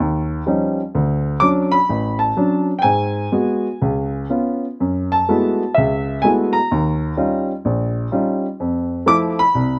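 A light reverb colours an open-air recording in which a warm, natural baby grand piano sits up front with short sustain. This relaxed, playful solo jazz excerpt, cut from a longer piece, moves with a swung, rubato feel in 4/4 across a span from A1 to D6. The harmony drifts through D#9, Dmaj7, G#m7 and C#7 to F#m11, returns to D#9 at 6.7 seconds, and settles on Fmaj7 at 8.6 seconds before the cut at 9.8 seconds.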